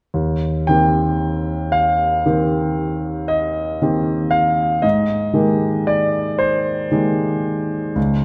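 Bathed in a wet concert hall reverb, this hazy, dreamy fragment of impressionist classical solo piano sets a clear, up-front concert grand with deep bass and long, natural sustain drifting with rubato at 38 BPM in 9/8, in Eb major tuned to A4 = 445 Hz, ranging from Db2 to G5 as it moves from Eb69 to Abmaj9 at 4.8 seconds before the cut at 8.2 seconds.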